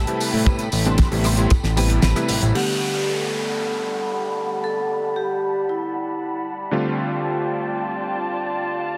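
Feel-good and groovy, this nu-disco excerpt moves at 115 BPM in 4/4 with a straight feel in G major, cut from a longer piece. It opens on an Am9 chord: a fat, sawtooth-edged analog bass with tube saturation sits up front beside a tight, dry acoustic kick, while a damped 70s kit with a fat snare, rim click, hi-hat and crash, plus a vintage tambourine tucked in the background, fill out the groove. A clean, compressed electric guitar riff with ensemble chorus and analog delay shimmers quietly behind, and a band accent lands at 2.0 seconds as the kick briefly drops out. Throughout, a clangy, up-front electric grand piano plays accompaniment and a muted, con sordino violin section holds lush, veiled chords, both carrying sidechain pumping and a low-pass filter. From 2.5 seconds a ringing, metallic vibraphone played with medium hard mallets takes the melody through analog delay, and at 2.6 seconds the harmony moves to Gmaj9, a filter sweep moves across the violins, and an electronic downlifter descends. 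Light reverb and a dense, heavily limited modern master keep the sound punchy, with the progression settling on F69 at 6.7 seconds.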